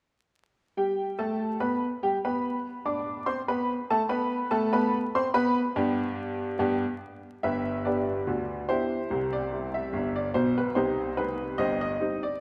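Vinyl crackle and a moderate concert-hall reverb surround this short cut from a longer ragtime piece, recorded in a church or concert hall. A worn, woody, slightly detuned upright piano enters alone and up front at 0.8 seconds, lively and jaunty at 72 BPM in 2/4 with a swung sixteenth-note feel, ranging from G1 to D6 in G major. A new section begins at 7.4 seconds, and a C minor chord colours the harmony at 10.8 seconds.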